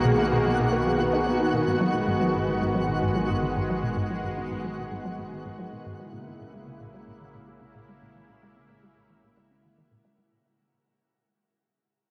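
A mysterious, cosmic stretch of ambient, sequencer-driven space music at 111 BPM opens at once with an airy, detuned pad sustaining Bmaj7, G#m7 and A#m7b5 chords up front, a mellow soft-mallet vibraphone arpeggio that rings in the background until 1.7 seconds, a juicy, squelchy phased blip-pluck riff, a fat, thick analog bass that fades out, and a twinkling granular texture with octave-up sparkle, all bathed in a long shimmer reverb and the worn, warbling pitch drift of old cassette tape as the whole passage fades out.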